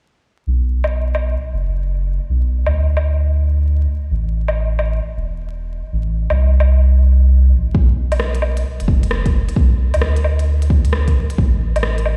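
Nocturnal and melancholic, this future garage excerpt swings on a round, deep dub sub bass pumping under crisp, tape-warm hi-hats, rim clicks and woodblock from an organic electronic kit, with an up-front electronic kick arriving at 7.7 seconds, all heard through stone room reverb and vinyl crackle as if played on a big sound system in a bare room.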